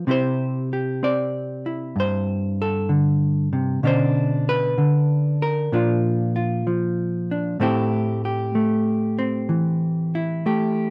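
A hollow-body electric jazz guitar plays alone from the first moment, its clean, dark, fingered tone sitting up front with light reverb around it. This brief excerpt of solo jazz swings at an unhurried pace, warm and playful in mood, and moves through Cadd9, Bmadd9, Bb and Am7 across its roughly 10.9 seconds. The guitar ranges from G2 up to D5, and the passage is cut from a longer piece.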